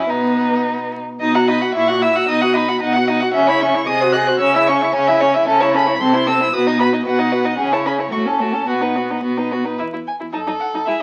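A graceful, spirited classical-period string quartet movement opens with all four players together, heard through the crackle of a very old 78 rpm record and a moderate studio reverb. The first violin carries the melody high above the group with a smooth, even bowed tone and vibrato, while the second violin, close and up front, shapes its inner line with soft attacks, portamento and expressive vibrato. The viola, also up front, fills in the accompaniment with a smooth, even sound, and the cello anchors the bass in a warm low register, sliding expressively between notes. In a flexible, rubato 2/4, the harmony moves from B through F#7/A# and C#m before a brief colourful turn to Am/C and a return to B. An F#m6 chord arrives at 10.3 seconds, and the cello drops out just before the violins and viola finish at 11.0 seconds, leaving the passage open as part of a longer piece.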